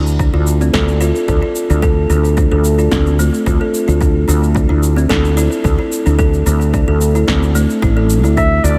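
A straight 4/4 groove at 110 BPM drives this mystical organic downtempo excerpt, where overdriven electronic kick, punchy snare and shaker, all re-recorded in a large room, sit under a round, dark fretless bass with analog chorus and woody, bright kalimba arpeggios ringing through tape echo over Dm and A5/D, before a smooth solo clarinet and a barely audible granular cloud pad enter at 8.4 seconds within light digital ambience.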